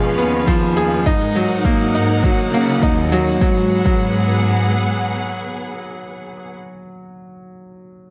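A dark, warm production with light small-room reverb frames this cinematic, melancholic piano and strings electronica, where a brilliant, up-front grand piano riff with tape echo carries on until 8.1 seconds over lush, distant bowed strings and intimate, tube-saturated cellos, both sidechain-pumped, while a deep, overdriven electronic kick and a faint shaker drive the opening drop before falling away by 4.0 seconds.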